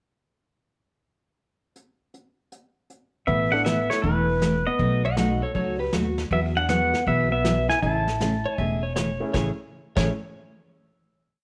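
Western swing country piece in A major at 158 BPM with a swinging, down-home mood: a vintage brush drum kit opens with a pickup bar from 1.8 seconds, then upright bass, picked dreadnought acoustic rhythm guitar, a hollow-body jazz guitar harmony line in thirds and an up-front pedal steel melody with slapback echo enter at 3.3 seconds, followed by a woody upright piano comping in close voicings from 3.5 seconds and a dark clean lap steel playing answering blues licks from 5.0 seconds, before the remaining parts settle on a final Amaj7 chord in light studio reverb.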